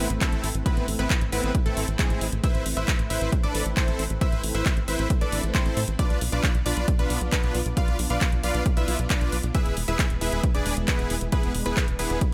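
Driving and euphoric, this uplifting trance passage is led by huge, detuned supersaw chords with delay, while a round analog pluck with subtle chorus and digital delay traces a second line in the background and a silky string pad holds sustained chords in the background as well. The tight, dark sequencer bass pumps against the sidechain along with the supersaws, pluck and pad, and the punchy electronic kick sits up front from 0.2 seconds beside a layered dance kit of handclaps and metallic hi-hats. The harmony moves from Amadd9 to Bdim at 6.0 seconds and on to E at 9.5 seconds, set within a digital ambience.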